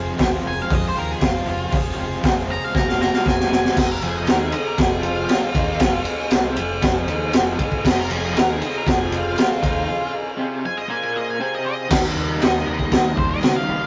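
A rough rehearsal-room recording with light reverb, tube saturation and a dull, capped top end frames this swaggering, menacing garage rock fragment in straight 4/4. Up front sits a gritty drum kit with a high-tuned snare and boomy kick, alongside a growling, punchy overdriven bass, a double-tracked crunchy guitar riff with tremolo in the background, a very quiet buzzy combo organ holding sustained chords, and barely audible hollow handclaps. A dark octave-fuzz lead guitar carries the melody through analog delay, with a drum fill at 2.8 seconds and a break at 9.9 seconds before the harmony shifts from Fm to Eb at 11.9 seconds.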